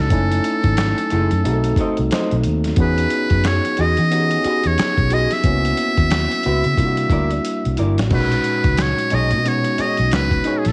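This short cut from a longer piece has the hazy feel of a home recording on cassette, softened by a light reverb. It is relaxed, warm neo-soul R&B with a swung groove. A buzzy, thin trumpet in a metal mute carries the melody up front, close-miked in a jazz style with vibrato and scooped notes. An overdriven tine electric piano, barky and gritty through a combo amp and colored by cassette tape, lays down lush extended chords. A dark, round, foam-muted electric bass punches underneath, while a compressed sampler-style drum kit, re-recorded in a large room, brings a thumpy kick, a medium-tuned snare, hi-hat, handclaps and crash cymbal, with a fill at 7.4 seconds. From 1.1 seconds, a slightly broken-up, lo-fi electric guitar through a small old amp adds a quieter second line, also touched by cassette tape.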